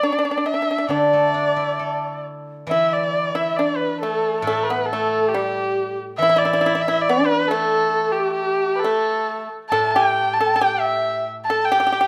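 A straight 2/4 pulse at 68 BPM carries this graceful, festive Chinese traditional chamber excerpt in D zhi mode, where a dark, expressive erhu leads up front with vibrato and portamento over a dry, percussive pipa second line and the silvery, ringing fingerpicked accompaniment of a steel-string zither, joined at 2.7 s by a distant, hollow large dizi with a buzzing membrane, inside a moderate recital hall reverb.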